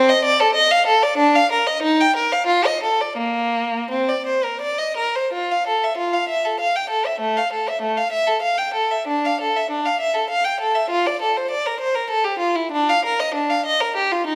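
A moderate recital hall reverb, with a 1.6-second decay, surrounds a single violin placed up front in the sound. This is a baroque-style suite movement for unaccompanied violin, dance-like and flowing in 3/4, with a rubato feel that lets the tempo move between 80 and 103 BPM. The bowed violin has a rich, focused tone coloured by vibrato, and it ranges from A3 up to G5 as it carries the music alone from start to finish. The piece opens in Bb major and moves to F major at 5.3 seconds, where the opening material returns in the new key. The recording is cut from a longer piece and runs to 14.4 seconds.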